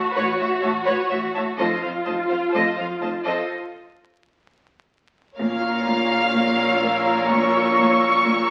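A focused violin section carries the melody from the start over a lush, close viola accompaniment, joined at once by an expressive second violin line, a smooth cello bass and a distant double bass in the background, in this ominous, tense excerpt of a suspense film score in slow 4/4. After a break at 3.5 seconds, the music turns to B-flat minor at 5.4 seconds, where a portamento cello riff and a high violin texture with a smooth top enter quietly behind. A stone room's reverb and the crackle of a very old 78 rpm record give the strings a haunted, aged sound.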